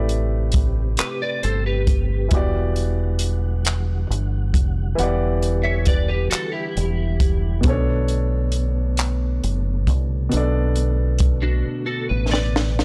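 A slow, straight six-eight groove at 45 BPM sets this yearning, sultry R&B excerpt in B phrygian, where a compact, dry cocktail drum kit with punchy kick, high-tuned snare, hi-hat and handclaps sits up front beside a dark, round fingered dub bass, while a warm grand piano moves through Am9, Em9 and Bm9, a soft, flute-like tonewheel organ with chorus vibrato and fast rotary speaker hovers in the background, a clean, picked, compressed electric guitar with ensemble chorus enters at 1.0 seconds as a second line, and a drum fill at 11.7 seconds closes the gritty, dry recording.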